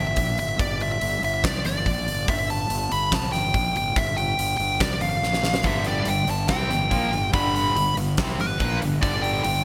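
Anthemic and energetic, this hard rock cut opens with a nasal, overdriven lead guitar through a parked wah and digital delay, carrying the melody up front over a growly, fuzz-soaked fingered bass and a huge arena drum kit, its fat snare, punchy kick and hi-hat bathed in gated reverb. After a drum fill at 5.2 seconds, two riffing guitars join in the background at 5.6 seconds: a bright, cranked stack with overdrive and subtle chorus, and a heavy high-gain one with distortion. The production is bright and 1980s-style, set in a lush hall reverb.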